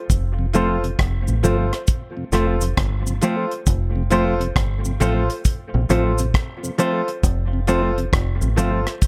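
A dry, tight reggae drum kit of kick, hi-hat and rim click opens this laid-back, sunny roots reggae excerpt alongside a round, foam-muted fingered bass sitting up front in its low register and a close, dry cabasa, all with a relaxed swing. A mellow tonewheel organ with key click and slow rotary speaker drifts in behind, while a dark, compressed clean electric guitar adds tape-echoed accompaniment. A clear, intimate grand piano with audible action noise and long sustain punctuates the groove with stabs, all resting on a single F chord under light reverb.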